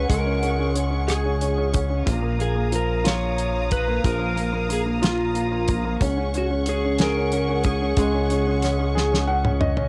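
A clean electric lap steel guitar carries the melody in this melancholic, aching six-eight pop ballad, its slide tone played with fingerpicks, compressed, shaped by volume swells and trailed by tape echo until it drops out at 9.3 seconds. Beneath it, a clear concert grand piano with a worn character and deep bass provides the accompaniment, while a lush studio string section holds soft-attack bowed chords with vibrato, played sul tasto with a smooth top and an intimate closeness. A glossy, retro synth bass with chorus and a quick filter pluck sits up front, built on pulse and sawtooth waves with ring modulation. A damped 70s acoustic kit, dry and up front with a fat snare, tight kick and rolled-off top, keeps a slow pulse of 61 BPM on hi-hat, kick, rim click, snare and toms. The harmony rocks between Dbsus4 and Bbsus4, and this fragment of a longer piece closes with drum and piano fills from 9.0 seconds, all set in a moderate booth ambience with the soft grain of a home cassette recording.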